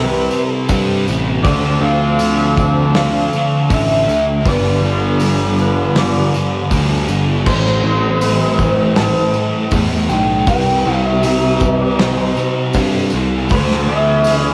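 Leading this dreamy, melancholic shoegaze and dream pop rock fragment is an electric guitar through a small old amp, its slightly broken-up, lo-fi tone carrying the melody under tremolo, plate reverb, tape echo and cassette tape coloring. The piece moves at 80 BPM in straight 4/4 in A minor, tuned to A4 = 435 Hz, and moves through Am7, Dm7, G7, Am7, Cmaj7 and Dm7. Beneath the lead, a dark, distorted fuzz guitar thickened with ensemble chorus and a compressed, twangy clean electric with reverse reverb both play riffs, while a growly, overdriven fuzz bass sits up front. A fingerpicked twelve-string acoustic adds very quiet, shimmering, octave-doubled arpeggios with fresh strings and a full-bodied jumbo sound. A distant, jingly tambourine comes in at 0.3 seconds, and at 0.7 seconds a loose indie drum kit joins with punchy kick, medium-tuned snare, hi-hat and crash in a pumping small room. 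The whole mix has the homespun character of a cassette home recording in a moderate studio reverb.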